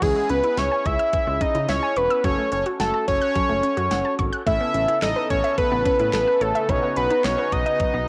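Nostalgic and upbeat, this synth-pop excerpt moves at 108 BPM in 4/4 over a C#m, F#m, Aadd9, Badd9 progression, led by a fat, nasal analog lead up front with sub octave, vibrato, chorus and tape echo. Beneath it sit bold, wave-folded synth brass in the background, a punchy, detuned unison pluck playing arpeggios with tape echo, a smooth, dark synth bass, and an electronic pop drum kit with knocking kick, crisp hats, handclaps and crash. An airy, bright unison pad enters with sustained chords at 4.5 seconds, and the whole mix sits in moderate spring reverb with the character of a home cassette recording.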